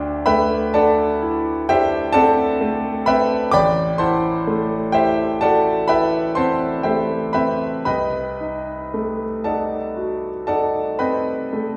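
Serene and dreamy, this short passage cut from a longer impressionist solo piano piece drifts by in a slow, rubato 9/8, with the dotted-quarter pulse moving at roughly 36-44 BPM. A bright concert grand carries everything alone from 0.0 to 11.8 s, ranging from A1 up to D6. Its tone is brilliant and polished, with deep bass, long sustain and audible action noise that keeps it intimate and up front. The harmony glides from D9sus4 to Am7 at 3.5 s and then to Cm6 at 7.9 s, giving the moment a floating, unresolved color. A wet recital hall reverb, like that of a church or concert hall, surrounds the instrument with a lingering, spacious glow.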